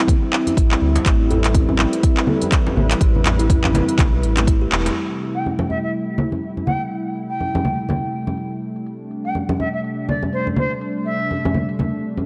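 Afro house at 123 BPM in A minor with a swung, driving and spiritual feel, this excerpt opens on a smooth, chorused analog pad holding an Am7 chord, while a woody kalimba plays arpeggios with tape echo and sampler grit, and a round, dark analog bass pumps beneath. An overdriven, deep electronic kick sits up front alongside ringing low-tuned congas, a drum kit with handclaps and filtered hi-hats, and a hard-handed djembe in the background, with a band accent at 4.7 seconds. At 5.3 seconds the kick, bass and kalimba have dropped away, and an airy, distant silver concert flute carries the melody with tape echo over the pad and percussion, all on a gritty cassette recording with light reverb.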